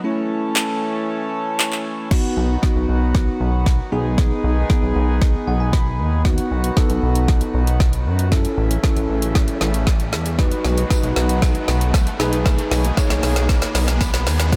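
A straight 4/4 dance-pop groove at 116 BPM in B mixolydian drives this summery, upbeat cut from a longer piece, where a bell-like tine electric piano and a reedy, breathing harmonium pump against the sidechain from the start, a deep house kit with a deep kick and woody snare arrives at 0.6 seconds, a drum-fill build-up begins at 2.1 seconds, a glossy, nasal chorused synth bass enters shortly after at 2.4 seconds, and a background riser from 5.9 seconds and a faint jingly tambourine from 10.6 seconds join chords moving among A, B and G#m/B in a dry mix.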